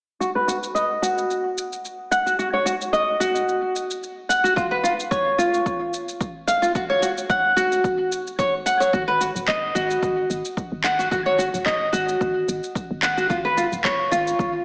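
A lightly swung groove of overdriven electronic shaker and handclaps carries this hypnotic, warm organic downtempo piece, as an up-front, fingerpicked flamenco guitar plays arpeggios with audible finger squeak, subtle chorus, a low-pass filter and tape echo, plus a filter sweep through its first 8.9 seconds; a punchy, layered, overdriven electronic kick joins at 4.6 seconds, and a soft, round, dark FM bass with sidechain pumping arrives at 8.9 seconds, the whole mix soaked in dreamy plate reverb with a small-speaker sound.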